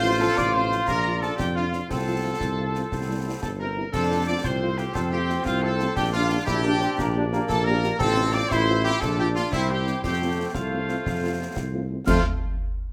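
A festive, proud military-style march for wind band in a straight 6/8 opens with all the winds together, led by a punchy trumpet section that carries the melody with light vibrato and a slightly distant, roomy sound. Above and around it, a mellow woodwind section and a pure, wooden-toned piccolo with tongued vibrato play a second line, the woodwinds sitting back in the mix. A dark French horn section with soft attacks fills in the accompaniment, while a clear trombone section holds sustained chords and an up-front tuba with a smooth top anchors the bass. At 0.4 s the concert snare drum, concert bass drum and clash cymbals join, close and dry, the cymbals somber in color. The band plays in a moderate large-studio reverb, and this passage is cut from a longer piece.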